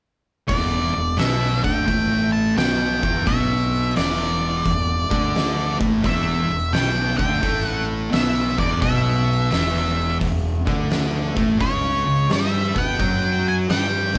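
An up-front octave-fuzz lead guitar carries a dark, picked melody between C#5 and A5 through this brooding, sludgy stretch of stoner and doom metal, cut from a longer piece and moving at 86 BPM with a swung 4/4 feel in E dorian. Beneath it, two thick fuzz guitars grind out the riff in the background, one dark and one warmer, while a growly, overdriven fingered bass and an oversized low-tuned kit with a fat snare, punchy kick and hi-hat fill the bottom. The band plays live together in a moderate stone room, holding on Em until a rootless Em69/C# arrives at 11.6 seconds.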